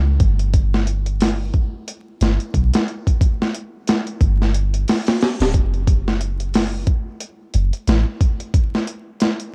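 A deep, round 808-style bass opens this brooding, dark trip hop excerpt in F# phrygian, sitting up front with a soft sine tone that hits fast and decays, joined at 0.2 seconds by a gritty, compressed sampler-style drum kit of thumpy kick, medium-tuned snare and hi-hat. The drums carry overdrive and a studio reverb, pushing a swung 90 BPM groove in 4/4. The bass drops out at 8.0 seconds, leaving the kit alone until 9.5 seconds, all heard through a close, dry sound of worn, warbling cassette tape with vinyl crackle and drifting pitch.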